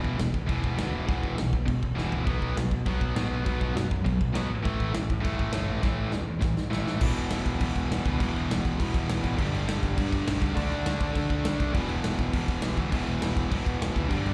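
A straight 4/4 pulse at 203 BPM drives this urgent, angry punk rock passage, cut from a longer piece, in E minor with tuning at A4 = 439 Hz. The acoustic drum kit sits up front in a big room sound, with a punchy kick, a medium-tuned snare, toms and bright crash cymbals, and it plays a fill from 5.8 to 7.0 seconds that leads into a second section. Two picked electric guitars carry riffs throughout, both with slapback echo: one is tight, bright and distorted, and the other is a biting overdriven part tucked in the background. Underneath, a growling picked bass, direct and amped with overdrive, anchors the power-chord movement from E5 through B5 and A5, back to E5, then G5 and D5, before it returns to E5. The whole band is heard as a live gig through the venue's PA, with light recital-hall reverb around it.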